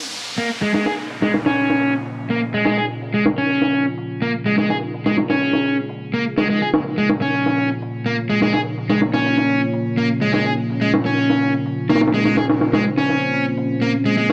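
Breakbeat at 125 BPM in Bb minor, a raw, funky 14.3-second excerpt held on a Bb minor chord, with an up-front crunchy overdriven electric guitar riff running through a low-pass filter and digital delay from 0.4 s. Underneath, a gritty, pitched-up sampler-style break of hi-hat and a high-tuned snare, compressed and re-recorded in a large room, sits behind low-pass filters, while a brief electronic downlifter opens the clip and runs until 3.5 s. A deep, warbling vintage sawtooth pad with a sub octave enters at 0.6 s, sustaining moody chords under chorus and its own reverb as a filter sweep moves across it, all set in a moderate studio reverb.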